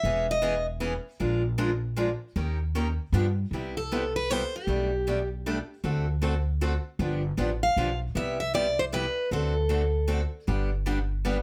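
Jazz manouche acoustic string swing at 155 BPM in 3/4, lively and swinging, where a bright, full-bodied plugged-in jumbo steel-string guitar picks the melody in short phrases over a boxy parlour steel-string guitar comping with audible finger squeak and a woody, dark, thumpy pizzicato upright bass on gut strings, all three up front in light reverb, settling into C major from 3.5 s as the chords move from E6 through Bb7, Eb7 and G7 to Cmaj7, D7 and a closing G.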